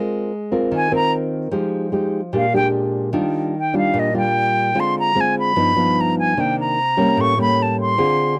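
Wistful and intimate, this short fragment of a longer bossa nova moves at 149 BPM in a straight 4/4. A nylon-string guitar opens alone at 0.0 s, supplying full-bodied, thumb-plucked classical accompaniment that sits up front in the mix. At 0.8 s a silver concert flute enters with the solo melody, its airy metal tone shaped by vibrato and a soft attack, placed just as close as the guitar. The harmony drifts through rich, yearning chords, from Ab69 and Fm9 to Ebmaj9, then darkens through Dm7b5, Gaug7 and Cm9 before settling on an unresolved A7b9. The sound is dry and close, with little reverb, in the manner of a 1970s studio recording, and both instruments play through to the cut at 8.4 s.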